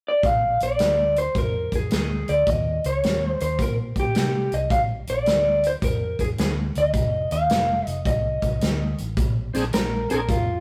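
Gritty and soulful, this short excerpt cut from a longer piece is an electric blues shuffle at 107 BPM in 4/4, swung on the eighths and set in Bb mixolydian. An electric guitar through a small old amp carries the melody from the start, its picked tone slightly broken-up, compressed and lo-fi, sitting up front between F4 and F5. Beneath it, a vintage fingered electric bass gives a dark, round, foam-muted bottom, while a natural country drum kit supplies hi-hat, a punchy kick and a medium-tuned snare. The harmony moves from Bb through Eb5 and F7(no3) before landing on Bb7 at 9.2 seconds, where the guitar turns to a clean solo. A bright tonewheel organ breaks in briefly at 9.5 seconds, shouting and lightly overdriven through a slow rotary speaker with chorus vibrato. The whole take has the rough feel of a rehearsal room, wrapped in a moderate stone-room reverb.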